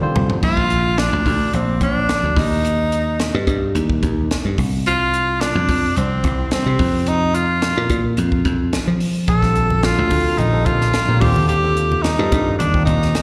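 A straight 4/4 groove at 108 BPM drives this funky, slick electric jazz fusion excerpt in Bb major, kicked off by a short drum fill from a crisp fusion kit with a high-tuned snare, punchy kick, dark cymbals, hi-hat and toms. Dry thumbed slap bass sits up front, bright and foam-muted, holding the low end from 0.2 seconds onward. A clear tenor saxophone carries the solo melody from 0.4 seconds, its soft attack and vibrato dressed in plate reverb, slapback and tape echo. A barky tine electric piano adds clean accompaniment with subtle chorus, returning at 9.4 seconds as the harmony moves through Bbmaj7 and Eb69. Very quiet, low-tuned congas with a thick-skinned, hard-handed sound touch in briefly at the start and return near the end. The performance is captured live through a venue's PA, with a recital hall's light reverb around it.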